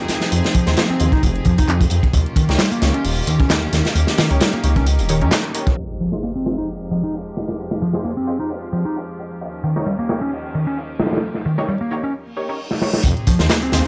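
Breakbeat at 132 BPM in F minor with a swaggering, energetic swing, built on a crunchy, saturated breakbeat kit up front and a faint tape-warm garage kit adding handclaps and hi-hat, while a thick, menacing detuned saw bass drops out at 5.3 seconds, a dark overdriven picked electric bass riffs through analog delay, bright ring-modulated orchestra-hit-like stabs punch through cassette grit, and a distant, earthy chamber string section holds pumping Fm7 and Eb7 chords that are filter-swept from 5.8 seconds, where electronic impacts and sub drops arrive, joined by a reverse cymbal from 12.3 seconds, all in a dry, gritty small room with vinyl crackle.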